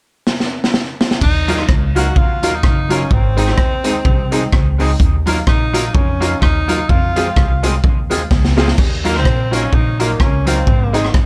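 Mischievous and energetic, this swung ska piece in Eb dorian moves at 127 BPM, opening with a gritty, punchy garage drum kit fill at 0.3 seconds before a woody, dark upright bass enters and a breathy, intimate tenor saxophone with tape echo takes the melody from 1.2 seconds. A twangy electric guitar at the edge of break-up, also treated with tape echo, and a detuned, jangly honky-tonk upright piano playing stabs join at 1.5 seconds over Ebmadd9, Ab and Fm chords. The drums sit up front in a small, pumping room, and a second fill leads into the closing stretch, all under light reverb.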